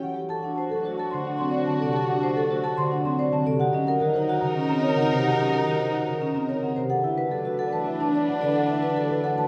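Minimalist classical pattern music in 3/4, hypnotic and propulsive, with a round, soft-mallet marimba carrying the melody over metallic vibraphone arpeggios played with the motor off, up-front thumb-plucked concert harp accompaniment, dark bowed chamber strings holding soft-attack chords, and a mellow soprano saxophone second line with light vibrato sitting in the background, the ensemble set in a moderate scoring-stage reverb.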